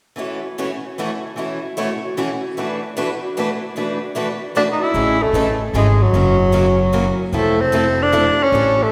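Acoustic string swing in the jazz manouche vein, this charming, swinging excerpt moves at 151 BPM in 3/4 and A major, opening with two bright, boxy picked acoustic guitars, one with a parlour character and the other swing-style, both with audible finger squeak, comping through chords like A6/E and Bm7/E. At 4.6 seconds a smooth-topped tenor saxophone with light vibrato takes the up-front solo melody, and a thumpy, woody pizzicato upright bass on gut strings joins at 4.9 seconds as the harmony shifts through Amaj7, F#7 and Fmaj7. The whole group sits in a lush, reverberant concert-hall space with a long, wet tail.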